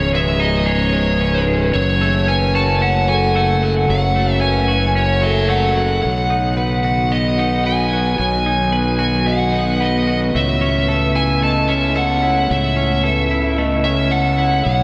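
From the first moment, a dark, overdriven lead guitar carries the melody up front in this cinematic, melancholic rock passage at 112 BPM, its picked line trailed by delay over a growly, punchy fuzz bass. Beneath them, a bright, twangy twelve-string electric guitar and a mellow, airy vibraphone played with soft mallets spin delayed arpeggios, while a very quiet, glassy FM pad with a warbling chorus holds slow-attack chords. The harmony moves from C#sus2 and F#madd9 to B at 6.0 seconds and Aadd9/C# at 10.3 seconds, all soaked in a lush hall reverb that gives this fragment of a longer piece a dreamy haze.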